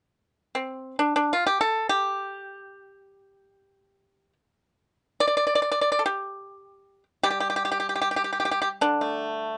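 Lightly reverberant and softly rounded at the top, this short excerpt of traditional Chinese solo plucked-string music has a serene, elegant mood. A single acoustic pipa, played with fingerpicks and placed up front with a dry, percussive attack, moves in free time through the G shang mode, ranging from D3 to D5 and tuned to A4 = 441 Hz. It enters at 0.5 s, shifts into a new section at 7.3 s, and rings on until 9.6 s.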